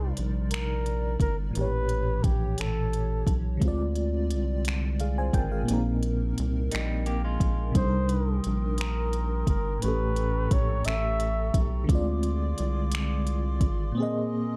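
The production is dark and close, with little reverb, and the drums and bass sit up front in this late-night, sultry slow R&B fragment in a swaying six-eight. A lush FM electric piano, layered with a soft pad and treated with chorus, phaser and tremolo, carries the minor-key harmony throughout. Beneath it, a rubbery, bouncy square-wave bass with a resonant filter pluck pairs with an electronic kit of soft kick, smooth hi-hat and finger snaps that has a tape-warm character. A mellow, breathy flugelhorn takes the melody in two phrases with jazz-style vibrato. Between them, at 6.7 s, a slightly broken-up electric guitar through a small old amp plays a short picked line. From 7.7 s, a close-miked flute section adds airy sustained chords with a crisp attack and vibrato.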